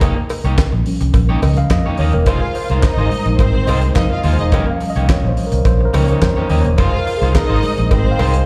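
A short disco excerpt in F minor at 106 BPM opens with a mellow tine electric piano carrying a solo through its built-in speakers. Beneath it sit a damped 70s drum kit, dry and up front with a fat snare, tight kick, hi-hat and handclaps, and a dark, foam-muted fingered electric bass with a round, amped tone. A bright, twangy electric guitar at the edge of break-up adds accompaniment alongside a close, metallic cowbell tucked in the background, both sent through slapback echo like the keys. At 2.3 seconds a clear, lush studio string section enters with focused, bowed vibrato and a smooth top as a second line. The harmony rocks between Eb7/F and Fm7 in a sultry, driving groove, heard as a live gig through the venue's PA with recital hall reverb and small room ambience.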